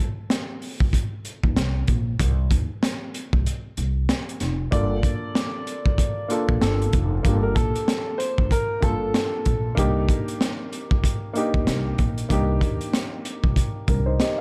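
Gritty and reflective, this boom-bap hip-hop excerpt rides a swung 4/4 groove cut from a longer piece. A crunchy breakbeat kit opens at 0.3 seconds, sitting up front with a punchy kick, a high-tuned snare and hi-hat, its saturated tone carrying a rolled-off top. A pizzicato upright bass joins at 1.4 seconds, woody and thumpy with steel strings, over a chordless break until 4.7 seconds, when the harmony arrives on Gm9 before moving to Cm7. At that point a dark baby grand piano enters as accompaniment, mellow and intimate with audible action noise and a short sustain, while an upright piano with a vintage, long-sustaining tone carries a brief melody through filters and a digital delay until 9.7 seconds. Studio ambience surrounds the parts.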